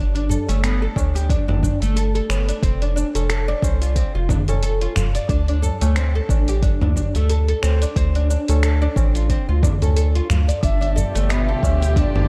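Mystical and warm, this organic downtempo excerpt at 90 BPM in D dorian swings gently over woody, double-strung oud arpeggios with delay and a round, nasal analog bass up front, joined at 0.2 seconds by a gritty sampler-style kit of snaps, hi-hat, shaker and toms alongside low-tuned ringing tabla, then a deep electronic kick at 1.0 seconds, before a breathy, hollow cedar flute melody and dark bowed chamber strings with sidechain pumping arrive at 10.6 seconds as the chords move from G through F and D7 to G7.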